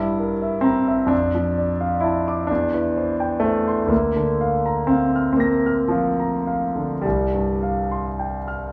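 A clear concert grand piano carries this romantic nocturne alone, its polished tone sitting up front with a deep bass that reaches down to C2 and a treble that climbs as high as Bb6. The mood is dreamy and tender, and the playing moves freely in rubato over a 6/8 metre, the pulse felt in slow dotted-quarter beats. The harmony drifts through a descending chain of chords, from Edim/G through Dm/F, C/E and Bb/D before settling on an open, unresolved Csus4 at 7.0 seconds. A moderate reverb from a large studio surrounds the instrument, so the sound seems heard from further back in the room even as the piano itself stays present and distinct. This short passage of 8.7 seconds is cut from a longer piece and ends on that suspended chord.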